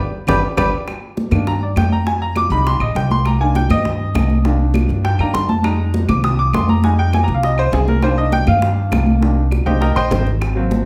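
Heard from further back in a large studio with moderate reverb, this fiery, sophisticated Afro-Cuban jazz excerpt sets a brilliant, slightly detuned upright piano soloing up front over a thumpy, gut-strung pizzicato upright bass, with tight, high-tuned bongos, thin-skinned congas played with soft hands and woody, band-limited claves in the background, opening on a band accent and percussion fill within the first second and closing with another fill at 9.5 seconds.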